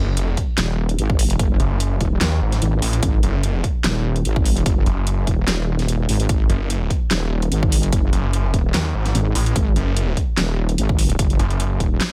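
Heavy and chaotic, this short cut from a longer heavy wobble dubstep track runs at 147 BPM in a swung half-time feel, built on a snarling, growling distorted saw bass with overdrive from the very start and a detuned, chorus-treated wobble bass that joins at 0.6 seconds, both sitting up front. Underneath, a punchy, tape-warm electronic kick and a layered dubstep kit of handclaps, metallic hi-hats and a huge snare carry studio reverb, all set in a digital ambience.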